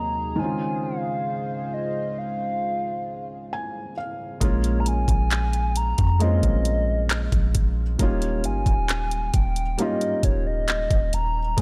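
A hollow, woody clarinet-like synth lead carries the melody in this moody, longing contemporary R&B excerpt in Bb minor at 67 BPM, its detuned, vibrato-touched tone colored by chorus and tape echo above a felt-muted upright piano with an intimate, mellow sound and audible action noise. A shimmering, retro pulse-width pad holds sustained chords at the start, and the piano plays a fill from 3.1 s before the pad drops away at 4.4 s. There a deep, round 808-style bass and an up-front trap kit of knocking kick, tape-warm hi-hats and handclaps enter over Bbm7 and Eb7 chords, set in a digital ambience.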